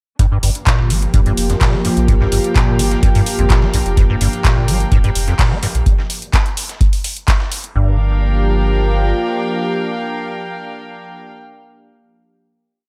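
A squelchy, hollow square-wave acid line leads this raw, playful acid house piece, its resonant filter sweeping through a 16-step pattern of accents and slides, thickened by ensemble chorus and analog delay and pumping against the kick. A deep, up-front electronic kick drives a straight four-on-the-floor pulse, while a booming analog drum machine adds metallic closed and open hats and a clap backbeat. Underneath, a gritty, overdriven soul sampler-style kit plays a looped, edited breakbeat in the background, its snare and hats thinned by high-pass filtering. A round sine sub bass plays a syncopated riff, and a thick, detuned sawtooth pad with chorus holds slow-attack chords over Gm7. A reedy studio string section with gut-string tone and light vibrato fades in from 0.2 to 5.9 seconds, and at 7.8 seconds the groove gives way to a final chord held by pad and strings, all bathed in a dreamy plate reverb.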